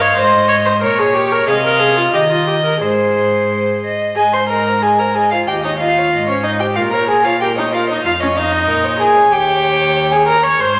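A straight 2/4 pulse at 92 BPM carries this lively, graceful classical-period string quartet movement in Ab major, a short cut from a longer piece whose opening phrase returns at 4.2 s. A bowed violin with light vibrato sings the melody while a second, close and up-front violin plays a louder line above it. The viola, also up front with light vibrato, supplies the accompaniment, and a close, quieter cello holds the bass. All four players share a reedy gut-string, period-style tone, set in a recital hall with a lingering 1.7 s reverb.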